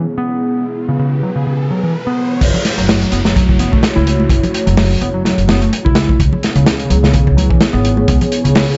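Crunchy breakbeat drums with dark cymbals, a tight kick and a rolled-off top sit up front from the drop at 2.4 s in this gritty, funky 127 BPM breakbeat fragment in F# minor, joined by a woody pizzicato upright bass and damped, close congas in the background, while an overdriven picked electric bass riff with tube saturation and delay and a moody, detuned sawtooth pad with chorus, 12-bit sampler grit and sidechain pumping run from the start, and electronic riser and downlifter effects play until 6.2 s, all in a small room with light reverb.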